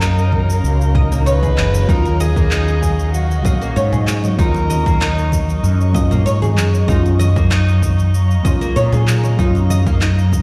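Organic downtempo with a mystical mood, where a dark, bowed kamancheh sings a delayed melody with vibrato and portamento until 5.6 seconds over bright, woody oud arpeggios, a round, punchy fretless bass up front, an ethereal pad with tremolo and sidechain pumping, a glassy texture of drifting overtones, electronic handclaps and shaker, a layered punchy kick and very quiet congas from 0.3 seconds, a brief electronic swell, and a deep, soft chord stab from 1.9 seconds, all ringing in a bare stone room.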